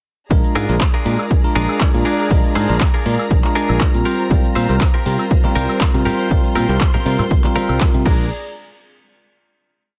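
Filtered disco house at 120 BPM in Bb mixolydian, sunny and funky, with a light swing on the sixteenths and a dry, close sound. A punchy, tape-warm electronic kick sits up front in a four-on-the-floor pattern, while an analog drum machine adds closed and open hats, claps, cabasa, woodblock and crash, all pumping against the kick. A growly, fingered electric bass plays a syncopated funky line beneath bell-like tine electric piano chords in a dotted rhythm, treated with phaser and the same pumping. From 0.6 seconds a clean, twangy guitar picks a compressed funk chord riff, and a lush, bowed string section holds sustained chords with vibrato above it all. Tambourine and congas join quietly in the background at 4.3 seconds as the harmony moves from Bb7 to C7sus4 and back, before the drop gives way to a final hit at 8.3 seconds.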